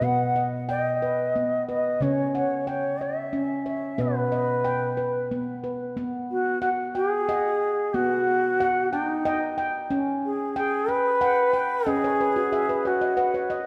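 This is meditative world music built on tuned percussion, calm and dreamy, moving at 61 BPM in a gently swaying 6/8. A bamboo bansuri carries the melody with a soft attack and expressive vibrato, set in a diffuse ambient delay that gives it an airy, distant glow. Beneath it, a nitrided-steel handpan played with the fingertips spins out ringing arpeggios, sitting up front with a warm, resonant tone. The harmony drifts between B and C#m, and a second section opens at 6.0 s, with the handpan adding a fill from 11.9 s. A lush concert-hall reverb wraps both instruments in a spacious, enveloping wash, and the recording is cut from a longer piece.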